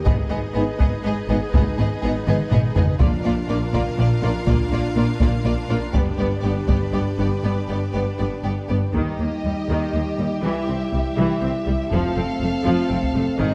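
In a steady 6/8 at 81 BPM, this heroic, triumphant orchestral film-score excerpt in Eb major drives forward on a heavy-sticked taiko ensemble beneath a lush string body, with warm violins carrying the melody over a second violin line, intense violas, a rich cello section and clear double basses, while mellow French horns hold sustained chords from 0.6 seconds, a clear string section sustains chords until 9.0 seconds, a drum fill lands at 2.3 seconds just before a round, soft-mallet timpani stroke at 3.0 seconds, and the whole sits in a dark production with a moderate scoring-stage reverb.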